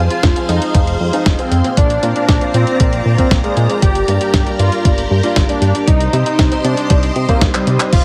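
Lush string machine chords, a glossy, nasal chorused synth bass and a vintage grand piano stabbing in the background open this nostalgic, melodramatic italo disco excerpt at 117 BPM in straight 4/4, moving through Fm, Bbadd9, Gm and Cm. A thick, detuned unison lead carries the melody with vibrato, subtle chorus and tape echo. Meanwhile a thumpy electronic kick and a clean 12-bit drum machine with medium-tuned snare, handclaps, hi-hat and crash, both re-recorded in a small room, drive the beat up to a drum fill at 7.5 seconds, all set in light digital reverb with a heavily compressed, radio-like sound.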